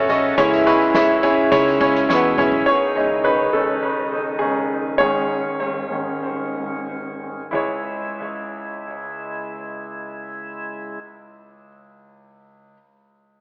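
Piano-driven pop in C# minor, earnest and bittersweet, moving in a straight 4/4 at around 89-105 BPM, with an echo-heavy, AM radio character in a moderate echo chamber. A clear concert grand piano sits up front, polished, with deep bass and short sustain and a touch of analog delay. A reedy tonewheel organ holds sustained chords through a slow rotary speaker, with audible key click. In the opening bars a distant, mellow French horn section carries a second line with light vibrato, alongside a round, foam-muted electric bass, an acoustic drum kit with a punchy kick, a fat snare and bundle sticks in the background, and a very quiet, jingly tambourine. After a drum fill, the piano takes a solo from 2.7 seconds as the tempo slows and the harmony moves from C#sus2 to G#sus4; the organ stops at 11.0 seconds, and the piano carries on over C# minor until 12.7 seconds.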